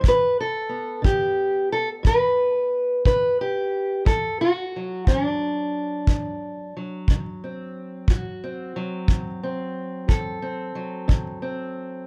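A slow 12/8 pulse at 60 BPM carries this gritty, rollicking acoustic country blues fragment in D mixolydian, cut from a longer piece, where an up-front, boxy parlour steel-string guitar fingerpicks the melody from G to D7 at 4.1 seconds over a punchy, polished kick drum with an airy studio-room tone that drops out at 11.2 seconds, all set in a dark, warm production with moderate booth ambience.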